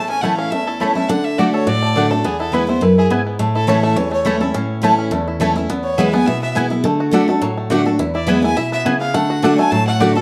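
A dark, warm production sits in a wet studio reverb, giving this short bluegrass cut from a longer piece a driving, virtuosic character at a brisk 209 BPM in 4/4 with a light swing on the eighth notes. A clear, close fiddle carries the melody with light vibrato and an airy bow, its earthy tone bathed in plate reverb, while a twangy, percussive banjo played with fingerpicks shares the lead beneath it, also touched by plate reverb. Sitting up front in the mix, a bright, full-bodied dreadnought acoustic guitar picks out the accompaniment, with audible finger squeak adding texture. A mandolin enters at 0.2 s, its double strings producing round stabs that punctuate the groove. The harmony cycles through A, D and E, with the opening passage giving way at 3.4 s to a second section that leans on E and D before the music breaks off.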